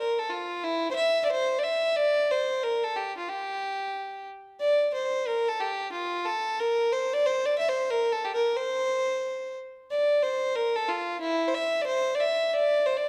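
A lone bowed fiddle carries this short Celtic folk fragment, its gut-string tone reedy and close, sitting up front in the mix. The mood is driving, dark and lively, with a swung lilt to the eighth notes that keeps the tune moving in a brisk four. The single player stays within a compact span from E4 to E5, stating the opening strain and then returning to it at 4.6 seconds, playing alone for the full 13.1 seconds. A resonant recital-hall reverb, with a decay of 1.7 seconds, wraps the instrument in a wet, roomy halo. The overall production leans dark and warm, lending the tune a shadowed, intimate character.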